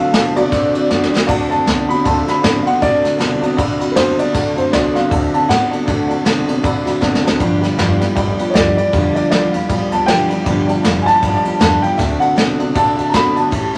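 Swung eighths in 4/4 drive this upbeat, retro rockabilly excerpt, where a soft brush kit with a tight kick sits up front, a thumpy pizzicato upright bass stays in the background, a jangly, detuned honky-tonk upright piano and a bright picked steel-string acoustic guitar with finger squeak fill out the accompaniment, a twangy, slightly broken-up electric guitar through a small old amp plays a riff, and from 1.5 seconds a dark, mellow upright piano carries the melody over D7 and G7 changes, with drum fills near 0.9 and 7.0 seconds, set in a wet studio reverb.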